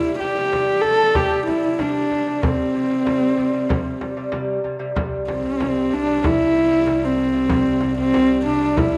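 Bathed in a moderate spring reverb, this excerpt of vast, proud Mongolian folk at 95 BPM puts a dark, husky horsehead fiddle up front, singing the melody with light vibrato, an airy bow and sliding portamento over delicate fingerpicked arpeggios from a mellow gut-strung lute and a deep frame drum struck with hard hands, until a smooth bowed double bass joins at 5.0 seconds with a rich, even drone.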